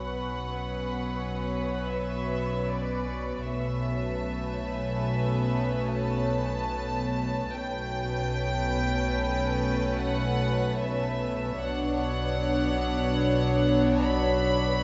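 A dark, softened sound fills a recital hall whose reverb lingers for about 1.5 seconds, with the top end rolled off so the strings never turn bright. This ominous, mysterious cinematic passage moves in free time and is cut from a longer piece. One violin section carries a floating melody high above a second violin section's line, both bowed sul tasto with a soft attack and a pure, close tone. Beneath them, a rich, distant viola section holds the accompaniment, while a warm cello section and a dark double bass section hold a steady B in the bass. A glassy, ethereal FM pad with ensemble chorus and its own reverb sits in the background, its slow attack and long release sustaining the chords. The harmony drifts from Bmadd9 to Aadd9/B at 3.5 seconds and back to Bmadd9 at 11.6 seconds, and all six parts sound throughout.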